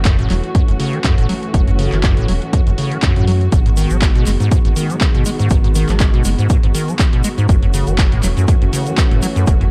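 Trippy and raw, this acid house fragment rides a swung groove: an up-front, punchy electronic kick, with handclaps and hi-hat from a tape-toned analog drum machine, while a grainy, close egg shaker joins in the background at 3.5 seconds. A squelchy, hollow square-wave acid riff with a resonant filter sweep runs throughout, coloured by analog chorus, cassette tape grit and tape echo, over a round, deep analog bass that sits mellow in the background. Dark, woody bowed strings hold lush sustained chords moving from F#m7 to G#m7 and back, and the strings, the round bass and the acid riff all pump with sidechain compression inside a shadowy digital ambience.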